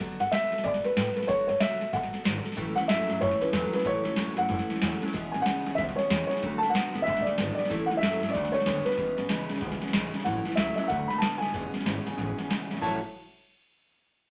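A dark, boxy upright piano carries the melody up front in this rowdy, upbeat rockabilly excerpt at a swung 188 BPM in A major, driven by a booming analog drum machine with a deep kick, crisp snare and metallic hats re-recorded in a large room, a thumpy, woody pizzicato upright bass on gut strings and a full-bodied, freshly strung acoustic dreadnought picked in the background, while a bright, twangy, slightly broken-up electric guitar through a small old amp joins with a picked riff at 2.6 seconds, the mix set in moderate studio reverb.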